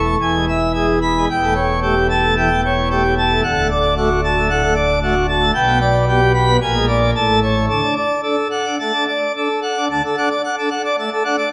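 A full, brilliant organ plenum sits up front in a wet scoring-stage reverb, giving this short fragment of a classical organ toccata a majestic grandeur. The solo pipe organ, its mixtures lending a romantic voicing, spans from a deep low register to a glittering upper register, moving through a chord sequence that passes a striking B-flat seventh before settling on D near 7.7 seconds. The passage shifts into a new section at 9.9 seconds and breaks off at 11.5 seconds.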